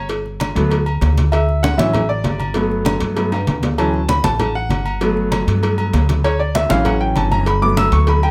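A moderate studio reverb frames this joyful, sunny salsa excerpt at 195 BPM, where a brilliant, intimate upright piano with audible action noise solos over Gmaj7 and Dmaj7 chords while a woody, thumpy pizzicato upright bass sits up front, hard-handed low-tuned congas, a round saturated cowbell and ringing metal-shelled agogo bells and timbales fill out the percussion, and a drum fill arrives at 3.3 seconds.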